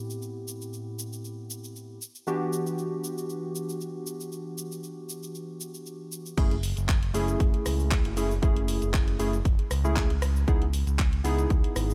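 Deep house in a deep, smooth mood, cut from a longer piece, opening on mellow, round analog key stabs shaded by chorus, tape echo and sidechain pumping over ninth chords, with a layered, small-room house kit of handclaps, hi-hat, rim click, shaker and crash cymbal. At 6.4 seconds the drop arrives as a punchy electronic kick and a dark, detuned synth bass enter, the bass gliding with portamento and vibrato, pumping with the sidechain and sitting up front. A digital ambience frames the mix.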